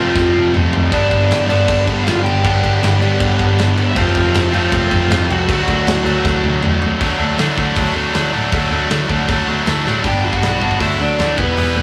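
Rebellious and rowdy, this punk rock passage charges along at 158 BPM in straight 4/4, led by a bright, double-tracked distorted electric guitar riff up front over a smooth, bowed double bass with vibrato. A crunchy overdriven guitar carries the picked melody, dropping out at 6.6 seconds and returning at 10.1 seconds, while a big rock drum kit with a punchy kick and rolled-off top adds several fills. The rough rehearsal-room sound carries light reverb, and the clip is cut from a longer piece.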